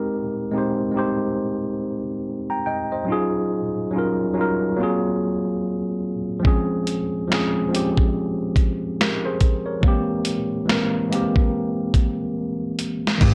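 A lazy 4/4 groove at 71 BPM carries a 61% swing on the sixteenths, giving this cosy, mellow lo-fi hip hop excerpt in A-flat major its unhurried, loping feel. A worn, slightly out-of-tune tine electric piano opens alone, lightly overdriven and heard through built-in speakers, with a tape-like haze and a dulled, filtered top as it moves through rich chords from Abmaj9 to Ebm11, Ab13, Dbmaj7 and C7b13. At 6.5 seconds a dusty, sampler-style soul kit arrives up front, compressed and gritty, with a thumpy kick, medium-tuned snare, hi-hat, finger snaps and crash, sounding as if re-recorded in a large room. The drums play a fill from 12.4 seconds, and a woody pizzicato upright bass lands on a single low A-flat at 13.2 seconds, just as the fragment cuts off. Light reverb and a cassette character give the whole recording a soft, lived-in sheen.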